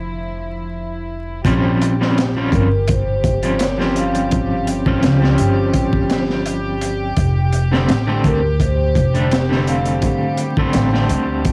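A slightly broken-up electric guitar with tremolo opens this cinematic, melancholic trip hop cut from a longer piece, sitting up front over pizzicato upright bass and a bowed string section holding sustained chords on F6. The guitar is bright and twangy, the bass woody and thumpy, and the strings carry a reedy, period-style gut-string tone. At 1.4 seconds a crunchy breakbeat kit enters at 84 BPM in 4/4 with a light 16th-note swing, its punchy kick, high-tuned snare and hi-hat sounding gritty and saturated with a dark, rolled-off top. Soft-mallet vibraphone takes the melody from 2.5 seconds, metallic and ringing with a slow motor vibrato and tape echo. The harmony moves to Bbm6 and later returns to F6, while guitar, strings, drums and vibraphone all carry cassette tape colouring, and the home-recorded cassette sound adds vinyl crackle and light reverb.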